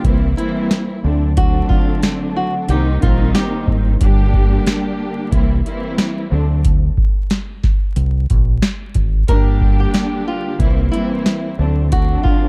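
Dark and tough, this boom-bap hip-hop cut sits on a swung groove from a booming analog drum machine with a deep kick, crisp snare and metallic hats, while a round, punchy fingered electric bass holds the low end up front. A lush, woody studio string section bowed sul tasto with vibrato fills the harmony through filtered minor-key chords. A bright, fingerpicked flamenco guitar with audible finger squeak and tape echo slips in at 0.4 seconds and returns at 9.3 seconds, all in a dry, dusky production laced with vinyl crackle.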